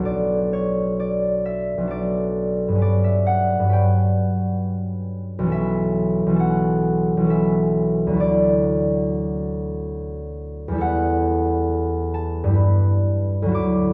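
A dark, wet recital-hall reverb surrounds a solo concert harp that sits up front, its thumb-plucked strings ringing from a low B1 to a high D6. This dreamy, graceful classical passage, cut from a longer work, moves in an unhurried, rubato triple metre. Its lush extended chords drift from Bm7 through Gmaj7#11, Bm11, Dmaj9 and Em11 before settling on G69 at 12.6 seconds.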